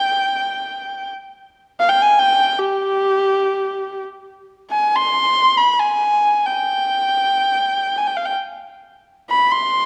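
The recording sounds dark and warm, with a moderate reverb like a large scoring stage lingering around a single instrument. This short cut from a longer Turkish makam performance is in free time and centres on G in makam hicaz, carrying a passionate, warm mood. One kamancheh plays solo and up front for the full 9.9 seconds, bowed with an earthy, rich body, a biting edge and a smooth top. Light vibrato and gliding portamento shape its lines as it moves between G4 and C6. The passage falls into two statements of the same material, the second beginning at 4.3 seconds.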